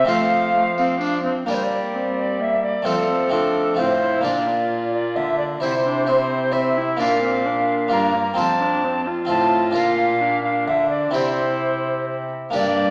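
Classical renaissance-style consort dance in triple metre, stately and courtly, where a mellow, pure-toned alto recorder with vibrato carries the melody up front over a close, dry, full-bodied harpsichord, a reedy gut-strung viola, a rich, nasal cello on the bass line and a faint, jingly tambourine in the background, all set in a recital-hall reverb heard from further back with a small-speaker quality in this cut from a longer piece.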